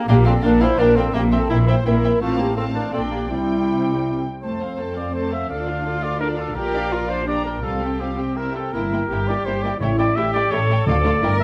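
A warm French horn section holds sustained chords over the opening 4.2 seconds of this quick, dramatic and restless classical-period orchestral movement in F major and 3/4 at 168 BPM, played with rubato, while a bright clarinet and a mellow cor anglais share a second line alongside a veiled, con sordino string body of violins on melody and second line, vibrato-tinged violas, and cellos and up-front double basses carrying the dark bass. From 4.4 seconds a punchy, vintage-toned solo trumpet sits up front with stabs as the harmony moves from F through Dm and Bb toward an A7 and Dm close. Timpani with medium mallets enter in the background at 9.8 seconds, all within a moderate recital-hall reverb, in a clip cut from a longer piece.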